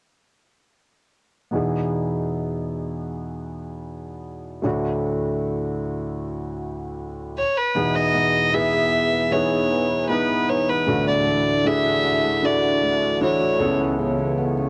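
Hopeful and tender, this pop excerpt opens at 1.5 s with a concert grand piano alone, its intimate, polished tone up front, with deep bass, long sustain and audible action noise as it moves between Emaj7 and Dadd9. At 7.4 s a single bowed fiddle takes the melody, nasal and reedy with a gut-string grain, sitting prominently alongside the piano. From 7.8 s a background pad fills in sustained chords, a bright, evolving blend of detuned sawtooth, triangle and sine with a sub octave, a resonant filter swell, slow attack, long release and chorus. A very quiet fingerpicked flamenco guitar enters at the same moment, adding soft acoustic arpeggios beneath. Piano, fiddle and pad carry a cassette-tape coloring, and the whole piece sits in the modest booth ambience of a home recording as the harmony settles on Aadd9/C#.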